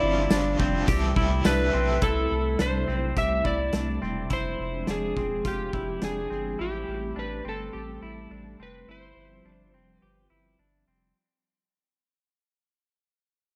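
Soaked in moderate spring reverb and small room ambience, this echo-heavy dream pop excerpt in C major drifts at 105 BPM in a straight 4/4 with a blissful, dreamy mood, fading out from 2.0 seconds onward. An up-front electric slide guitar, slightly broken-up, played with fingerpicks and trailed by dub echo, carries the melody over a silky, vintage string machine with ensemble chorus, a clean semi-hollow guitar picking arpeggios through subtle chorus and dub echo, and a deep, thick saturated sine sub bass, while a compressed overdriven guitar with tremolo and lush chorus plays only in the opening two seconds before the fade begins. A loose acoustic indie drum kit with a punchy kick, medium-tuned snare, hi-hat, tambourine and dub echo pumps in the room from 0.3 to 6.2 seconds, as the chords move from G7sus4 through C6, Fm6 and Am7.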